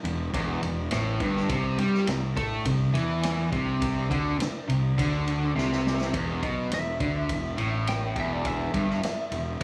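A straight 4/4 groove at 104 BPM drives this gritty, brooding slice of blues rock power trio and southern rock in E minor, cut from a longer piece. The overdriven, double-tracked electric guitar sits up front with a dark, picked riff, moving between Em and C5 over a fuzzy, round fingered bass that rumbles low beneath it. A vintage acoustic drum kit fills out the room-toned studio sound with a punchy kick, a medium-tuned snare and dusky ride cymbal, its top rolled off. After a drum fill from 5.6 to 6.1 seconds, the music shifts back to Em and a lightly driven lead guitar begins a solo. That lead enters at 6.7 seconds, bright, twangy and compressed, slightly broken-up as it picks high above the riff. A light reverb and small room ambience keep the trio close and tight.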